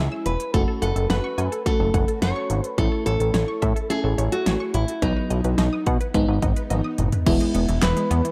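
A straight 4/4 pulse at 107 BPM drives this melancholic synth-pop excerpt, with a punchy, overdriven pop drum kit entering at 0.3 s beneath a fat, detuned sawtooth analog bass that sits up front. A fingerpicked nylon-string guitar carries the melody over a lush, dreamy FM electric piano with chorus and a soft pad layer, while a wave-folded unison pluck spins arpeggios, and dub echo trails the guitar, piano and pluck in a light digital ambience. A drum fill at 6.7 s leads the progression from C#m to a closing E chord at 7.3 s.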